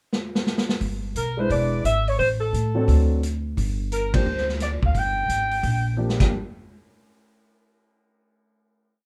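Big band swing with a sultry, brassy mood: a gritty vintage drum kit with dark cymbals opens with a fill and keeps time on the hi-hat, a woody, thumpy upright bass plays in two from 0.8 seconds, a mellow saxophone section with vibrato carries a motif-based melody in four-part block voicing from 1.2 seconds, and a warm grand piano adds syncopated comping, all in a moderate club reverb, with a band accent at 4.1 seconds before another drum fill leads to the final hit at 6.3 seconds.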